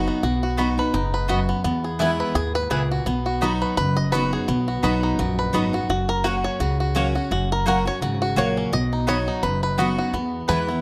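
Bluegrass at a driving, lively 170 BPM in B major with a light swing, taken from a longer piece: the fingerpicked banjo carries the melody as a twangy, percussive solo up front, touched with tape echo, while a full-bodied jumbo steel-string guitar is picked up front beside it. Underneath, a gut-string upright bass is plucked with a dark, thumpy, woody tone, and a bright double-strung mandolin adds stabs from 0.6 seconds. The chords move between B, E and F#, and light reverb and studio ambience give the group a natural sense of space.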